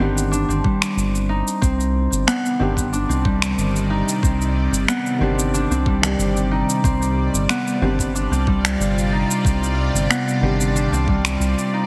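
A fingerpicked Celtic harp rings up front through this short organic downtempo excerpt, its arpeggios roughened by vintage 12-bit sampler grit and digital delay over a single Cmadd9 chord in C harmonic minor at 92 BPM. Beneath it, a dark, smooth synth bass and a felt-muted upright piano with audible action noise both pump to the sidechain, while a knocking electronic kick and up-front shaker and finger snaps carry a straight 4/4 pulse. From 2.2 seconds a tense, string-like drone with phaser and vibrato rises into the mix, all set in a lush hall reverb with a heavily compressed, radio-like sheen that keeps the mood earthy and warm.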